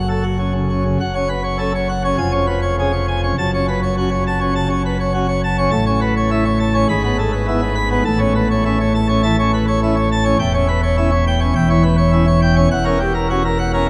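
Dramatic and majestic, this short passage cut from a longer classical organ toccata moves at 103 BPM in a straight 4/4 in F# minor. A solo pipe organ plays throughout on a full plenum with mixtures, its brilliant, baroque voicing and chiff sitting up front while spanning from a deep E1 to B5. The harmony moves from F# minor through C# with E# in the bass, touches A major and E with G# in the bass, then darkens on a C# diminished chord over E before closing at 12.7 seconds on F#7 over E. A brief opening gives way at 1.0 seconds to the main body of the passage, which runs to 13.9 seconds. The organ rings through a vast, echoing cathedral, its wet reverb trailing for 6.6 seconds and lending the sound a towering grandeur.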